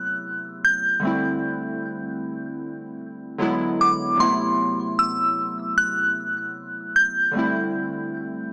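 A straight 4/4 pulse at 76 BPM sets an unhurried, moody R&B groove in A dorian, tuned to A4 = 442 Hz, in this 8.5-second cut from a longer piece. A glassy FM synth bell carries the melody high in the register, its bright, crystalline tone warbling through chorus, tremolo and tape echo, with fast attacks and long, decaying tails. Beneath it, round analog keys play the accompaniment in a lower range, blending detuned square, sawtooth and triangle waves with wave-folding, a filter sweep and chorus. Both parts sit up front and play throughout, moving through Am69, C6 and E7 chords for a sensual feel. The sound is dry and gritty, with little reverb and the character of cassette tape heard through a small speaker.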